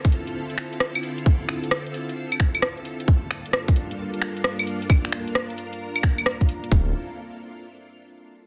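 Soulful and late-night, this two-step UK garage cut swings on an up-front electronic kick drum with a tight, tape-warm thump and a layered garage kit of metallic hi-hats, claves, finger snaps and rim clicks with soft clipping on the snare, all in small room ambience, while a silky, warbling string machine with ensemble chorus and sidechain pumping holds mellow Dm9 and Gm9 chords, returning to Dm9 as a dark, detuned, rumbling saw bass drops in on a deep D1 at 6.7 seconds as the drums stop, heard through a dense, heavily limited modern master.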